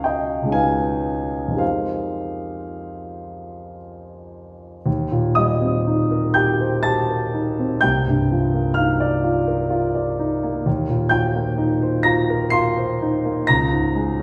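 This is impressionist classical music for solo piano, a hazy, dreamy fragment cut from a longer piece. It moves in a slow 3/4 metre at roughly 54-66 BPM, with a rubato feel that lets the pulse breathe freely. A warm concert grand plays alone, sounding up front with a deep bass, an open tone and long sustain across a range from C2 to C7. Its rich harmonies pass from Db9 and Fm11 into a second section at 4.9 s built on Eb6, Cm11 and Eb69, before arriving on Db5 at 13.5 s. A wet recital hall reverb with a 1.6 s decay surrounds the music, as if heard from further back in the room.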